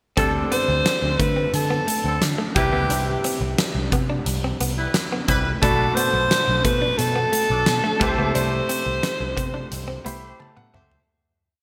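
1980s-style pop at 88 BPM with a nostalgic, glossy mood, built on a motif-based alto saxophone melody with vibrato and delay, brilliant held piano chords with grace notes and short fills, a compressed clean electric guitar playing a muted single-note line through lush chorus and delay in the background, a round, foam-muted picked bass playing a syncopated pop-funk line with chromatic approach notes, and a huge arena drum kit with a fat snare, punchy kick and gated reverb driving a big backbeat, while a distant horn section adds short stabs from 2.0 s and the whole piece sits in a lush hall reverb before fading out from 8.4 s under piano and drum fills.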